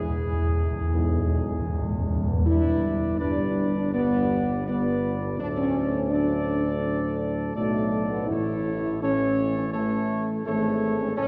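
Solemn and majestic, this classical brass passage, cut from a longer piece, opens with a round, soft-mallet timpani fill up front beneath a smooth-topped trumpet section melody and close-miked French horn chords, while a distant tuba with light vibrato carries the bass, a mellow trombone section enters in the background at 0.9 s, and the timpani returns at 8.3 s, the whole set in a dark, cavernous cathedral reverb.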